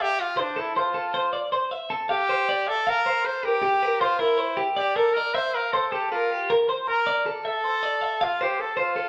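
Rock in a playful mood, moving briskly in 7/8 at 314 BPM counted in eighths, this short fragment has a clear, pop-style trumpet singing the solo melody with gentle vibrato and a soft attack. A bright, clean, twangy twelve-string electric guitar supplies compressed, picked arpeggios up front, and both parts play throughout over Fmaj7, then Gm7 from 2.1 seconds, settling on Dm9 at 7.4 seconds. The band sounds live together in one room, bathed in a wet, large studio reverb, and the trumpet carries a distant, roomy glow.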